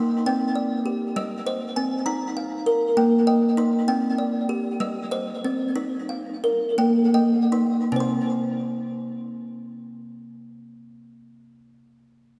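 World meditative music in a gentle, straight 6/8 feel, with a solo kalimba playing woody, thumbnail-plucked arpeggios over a Cm and Eb alternation up front in a dreamy plate-reverb haze with diffuse ambient delay, slowing from 3.9 seconds before settling on an open C5 at 7.9 seconds, with this excerpt of a longer piece continuing past its last note at 11.1 seconds.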